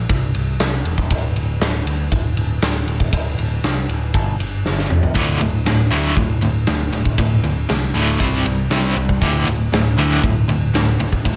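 Up front, a big, roomy rock drum kit with a punchy kick, ride and toms drives this aggressive, menacing hard rock excerpt at 118 BPM alongside a growly, overdriven picked bass, and after a drum fill at 4.6 seconds, a bright, cranked stack guitar with tremolo and a hollow-bodied overdriven guitar with spring reverb enter in the background at 5.1 seconds to lay down a riff on D5 and C5.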